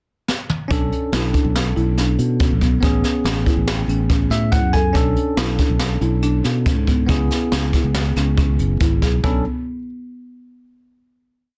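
Brooding and intricate, this short progressive instrumental piece moves at 140 BPM in an uneven 5/4 with a straight feel, centred on B dorian. A brushed jazz drum kit opens with a fill at 0.3 seconds, its high-tuned snare and boomy kick sounding roomy and distant yet up front, with a rolled-off top. From 0.7 seconds the fingered electric bass drives a syncopated riff, growly and amped, while a buzzing marimba played with soft mallets circles a woody, airy ostinato of arpeggios. A bell-like tine electric piano holds clean rootless chords through a progression of Bm7, Amaj7, Bm7 and C#m7, stepping forward with a brief fill at 4.1 seconds. The groove resolves onto a final Bm7 chord at 9.2 seconds, all wrapped in light reverb and a dense, heavily limited modern master.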